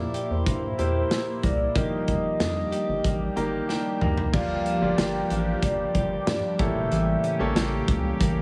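A straight 4/4 groove at 93 BPM from a punchy, up-front rock drum kit with a medium-tuned snare drives this glossy, romantic 1980s-style pop excerpt, where a round, horn-like synth lead with vibrato, chorus and digital delay carries the melody until 7.9 s over clear grand piano, a bright, evolving sawtooth pad and a lush-chorused clean electric guitar riff tucked in the background, with a rubbery, bouncy square bass underneath, light small-room reverb around it all, and a piano fill from 3.0 s joined by a drum fill at 3.7 s leading the harmony from C7 and Ebmaj7/F into Gm7 at 4.3 s, before A7b9 arrives at 6.6 s.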